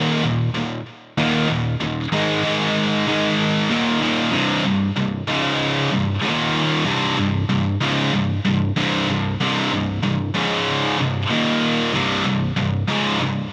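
A scooped, high-gain electric guitar, bright, picked and double-tracked up front with distortion and delay, plays alone through this epic, relentless metal excerpt in C phrygian at 95 BPM in a straight 4/4, moving over power chords from Eb5 and Ab5 into a C5, Db5 and Eb5 pattern after a shift at 4.3 seconds, all in light reverb.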